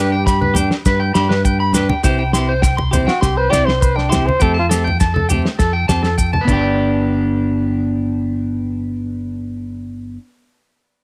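A dark, breathy trumpet carries a jazz-style solo with light vibrato and scooped notes for the first 4.7 seconds of this sunny, danceable highlife guitar band excerpt at 101 BPM in G mixolydian, set over a bright, compressed clean electric guitar, a twangy, slightly broken-up guitar playing arpeggios through tape echo, a round fingered electric bass sitting up front, a damped 70s drum kit with a fat snare, tight kick and dark cymbals that stops at 6.6 seconds, grainy maracas and ringing low-tuned congas, all captured as a home cassette recording with light reverb and small room ambience.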